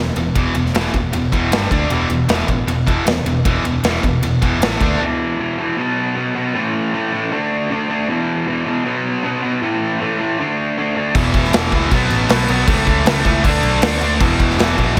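Hard rock at 156 BPM, anthemic and energetic, with a compressed, distorted electric guitar riffing up front through the whole passage while a high-gain second guitar, growly picked bass and a big acoustic drum kit with punchy kick and bright cymbals hammer along beside it. At 5.0 seconds the band drops away, leaving the lone guitar to cycle through E5, B5, A5 and D5 power chords, before the drums crash back in at 11.1 seconds and the rest of the lineup follows at 11.2 seconds. A lush hall reverb gives the mix a big arena sound.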